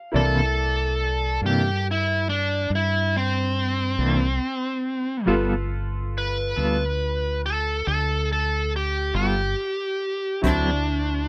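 A slow 12/8 blues rolls along at 47 BPM in dotted quarters with a straight, laid-back and rollicking feel, set in G mixolydian and tuned a shade low to A4 = 436 Hz. This short excerpt, cut from a longer piece, moves through C9, G9 and D9 chords. A smooth, overdriven lead guitar carries the melody up front with a bright, picked tone, and a deep dub fingered electric bass sits beneath it, dark, round and direct. A clean electric guitar with tremolo fills in the accompaniment in a warm fingered voice, and it stops at 10.7 seconds. A brilliant, worn upright piano adds woody, slightly detuned accompaniment with audible action noise and an intimate presence. A natural country drum kit appears only briefly at 10.4 seconds with hi-hat and a punchy kick in an airy studio room, all within a rough home demo mix that carries little reverb.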